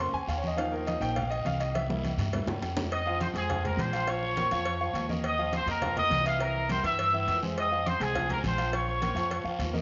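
A driving straight four-beat salsa groove sets the pace from the first second, carried by a background bed of low-tuned congas with soft hands, round cowbell and bongos played with hard hands, ringing agogo bells and metal-shelled timbales heard at a distance, and a raspy, far-off guiro. A woody, thumpy upright bass with gut strings plays pizzicato underneath, while a smooth, vintage grand piano sits up front with its accompaniment, taking a short solo spot over the opening bars as a drum fill arrives at 1.7 seconds. At 2.9 seconds a tight, punchy trumpet section enters with the melody, bright and vintage in character with a light vibrato, pushing the fiery mood forward. The harmony cycles through Fm7, Bbm, Ebsus2 and C7. The whole mix is bathed in a moderate echo chamber reverb with a dark, rolled-off top end, giving this cut from a longer piece a vintage, roomy glow.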